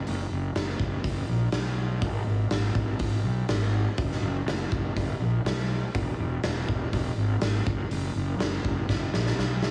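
A straight 4/4 pulse at 122 BPM drives this anthemic, restless quiet-loud alternative rock fragment, cut from a longer piece, where a raw garage drum kit of hi-hat, punchy kick and medium-tuned snare sounds saturated and gritty in a bright stone room, beside an up-front fuzz fingered electric bass that growls with overdrive low between E1 and B1, all pressed into a dry, heavily compressed radio sound before a drum fill at 8.9 seconds.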